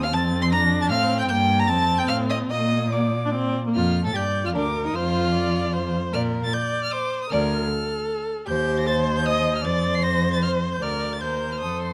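Closely miked with light reverb and fine detail, this graceful, lively excerpt from a classical-period string quartet movement in triple time flows with rubato: an expressive first violin sings high with vibrato and portamento over a dark, even second violin, a rich, soft-attacked viola and an up-front cello bass, before the music moves into a new section at 3.8 seconds.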